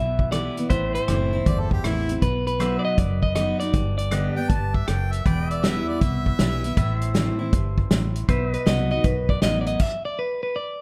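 A swung eighth-note feel in 4/4 drives this short honky-tonk and classic country cut, its dusty, heartbroken mood sitting on a minor-leaning progression. A natural, up-front drum kit with a punchy kick, medium-tuned snare, rim click, hi-hat and crash carries the groove, joined by a round, foam-muted fingered electric bass and a full-bodied jumbo steel-string acoustic guitar whose fresh strings ring bright, finger squeaks and all. A clean, twangy electric guitar takes the melody up front, while a bright harmonica adds a second line with light vibrato from 1.5 to 7.1 seconds. Lower in the mix, a compressed pedal steel, played with fingerpicks and slide, holds sustained chords with volume swells. The band stops around 9.8 seconds while the electric guitar carries on until 10.8 seconds, all inside a dark, warm production with a moderate large-studio reverb.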